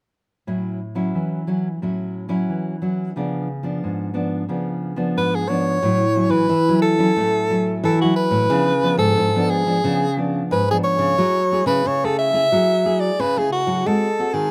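A bright, close-miked soprano saxophone carries the melody from 5.2 seconds, played up front in a jazz style with a singing vibrato. This lively, sunny excerpt of samba and choro has a straight 4/4 feel. A fingerpicked nylon-string guitar opens it at 0.5 seconds, sounding fresh and classical as it picks out rich extended chords, with shades of altered dominants and a minor ninth passing by. At 5.8 seconds a second nylon-string guitar joins to carry the bass line, its deep, fingerpicked tone sitting up front beneath the saxophone. The sound is dry and open, recorded outdoors with little reverb, so each acoustic string and reed tone comes through clearly.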